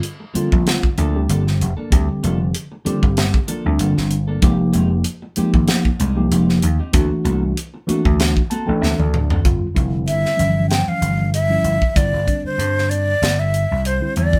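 Funky and intense, this electric jazz fusion excerpt rides a swung sixteenth-note feel. Up front, a crisp, polished drum kit with a high-tuned snare and tight kick pairs with a punchy, amped vintage slap bass, while a mellow, clean tine electric piano carries chords from Gm9 through Fm9 to D7b13 and a dark, compressed electric guitar adds fingered stabs. Electric piano and drum fills lead into a new section at 9.4 s, the guitar stops at 9.5 s, and at 10.1 s a breathy jazz flute enters up front with an expressive melody marked by vibrato, a soft attack and lifted highs, all within a live-room sound and moderate studio reverb.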